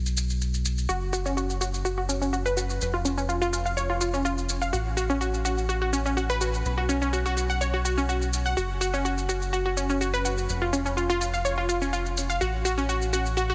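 A straight 4/4 pulse at 125 BPM drives this expansive, dreamy progressive house excerpt, with a round, deep analog bass holding the low end from the start and a tape-softened, layered electronic shaker joining at 0.1 seconds. At 0.9 seconds a bright, detuned analog pluck enters up front with arpeggios, its noisy, filter-swept tone thickened by chorus and trailed by dub echo as the harmony moves through F#5, C#/E# and B5 with open, chordless gaps between them. Light reverb surrounds a heavily compressed, radio-like sound.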